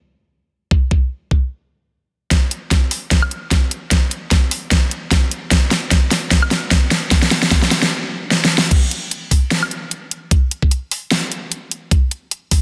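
A swung, half-time groove drives this bittersweet, emotional future bass passage from a longer piece, opening with an overdriven, knocking electronic kick drum up front at 0.7 s. A layered dubstep kit enters at 2.3 s with a huge snare, crash, hi-hat and woodblock, rolling through drum fills across a build-up that halts briefly before the drop lands at 8.7 s. Light reverb and a low-pass filter shade the dense, heavily limited modern master.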